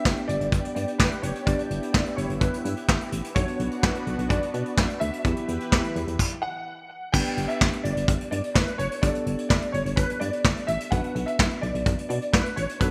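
A straight 4/4 pulse at 127 BPM drives this cool, melancholic synth-pop excerpt, led by a vintage brush drum kit placed up front with kick, snare, hi-hat and crash, its cymbals dark and its top rolled off. Beneath it, a solid FM bass sits punchy and round, with a fast attack that decays into a mellow tail. A warm concert grand piano carries the melody from B4 to G5, dressed in ensemble chorus and digital delay. In the background, a bell-like tine electric piano rings clean under lush chorus. A thick, warbling unison pad of detuned sawtooth holds sustained chords until 6.2 s, where a brief stop lands before the section repeats at 7.1 s. The chords move through G, Bm and Em, then return to G and Bm in the repeat. Light reverb and small room ambience frame the bright 1980s-style digital production.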